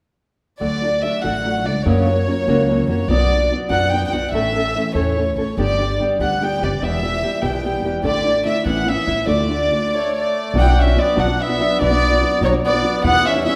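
Mariachi-style Mexican folk in 6/8 at 97 BPM in D major, romantic and festive, cut from a longer piece: a dark, intimate chamber violin section carries the melody up front with light vibrato and soft sul tasto bowing, over fingerpicked nylon-string guitar with audible finger squeak and a woody, thumpy pizzicato upright bass. A mellow, distant trumpet enters at 9.9 seconds with a classical-style second line, arriving on a brief stop before the music turns toward B minor at 10.5 seconds. The whole sits in a wet recital-hall reverb.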